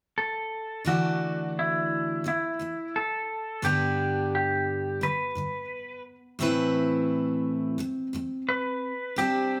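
A clean, twangy lap steel carries the melody from 0.2 s, joined at 0.8 s by a bright, full-bodied picked jumbo acoustic guitar with fresh strings, in this heartfelt, easy-going pop fragment at 87 BPM that moves through Dadd9, G and Amadd9, both guitars up front in a large studio reverb with the feel of a band playing live in one room.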